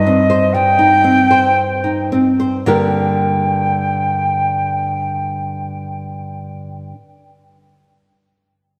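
A pure, vibrato-laden concert flute with a soft attack sings an elegiac, yearning melody over small, fingerpicked nylon-string guitar from the start of this romantic flute-and-guitar excerpt in G minor, moving in a rubato 3/4 at 52-65 BPM that slows through the opening phrase as a Cm/G chord gives way to G minor at 2.7 seconds, with a slapback echo on the flute, a long plate reverb and a distant sense of room, before the flute drops out at 6.6 seconds and the guitar rings on until 6.9.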